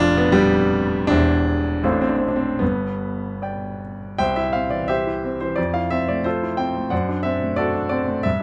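A baby grand piano sits up front with a natural, warm tone, carrying this brief, hopeful romantic character piece in C major from the deep bass to the upper middle register. The tempo breathes freely in rubato between 73 and 92 BPM in a gentle 2/4, opening on a G7 over F that resolves through C, F and G harmonies before a new phrase at 4.2 seconds moves through C, Fmaj7 and D7 over F sharp. Light reverb gives the solo instrument a touch of space in this short, warm-hearted passage cut from a longer work.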